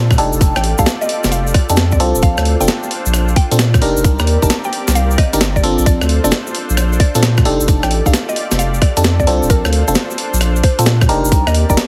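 UK garage in a two-step style, this bouncy, sunny excerpt in Bb major moves at 132 BPM with a swung 16th-note feel. An overdriven, tight electronic kick sits up front beside a deep, saturated sine sub bass, while a gritty, sampler-style breakbeat kit supplies hi-hat, rim click and a medium-tuned snare with the character of a large room. A close, grainy cabasa adds acoustic texture from 0.1 seconds. Glassy, bell-like FM electric piano stabs with chorus, phaser and tape echo outline the chords, cycling through F13, Bbmaj7 and Cm9, as a smooth, detuned sawtooth pad holds sustained chords with tremolo and sidechain pumping. From 0.6 seconds a woody, mellow mallet-like pluck carries the melody in the background, and the whole mix has a heavily compressed, radio-ready sound with light digital ambience.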